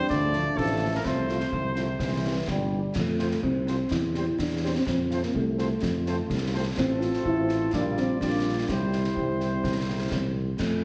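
A straight 2/4 pulse at 126 BPM drives this rousing, proud military-style march for wind band in F major, cut from a longer piece, with a bright trumpet section carrying the melody over a dark, close-miked euphonium second line and a punchy tuba bass. A clear trombone section holds sustained chords only until 2.9 s, while a mellow, distant French horn section enters at 0.3 s with accompaniment and concert snare, bass drum and clash cymbals with a shadowy cymbal tone keep the beat in a live room. The brass sections play in classical style with light vibrato, all set in a wet scoring-stage reverb and squeezed into a heavily compressed radio sound.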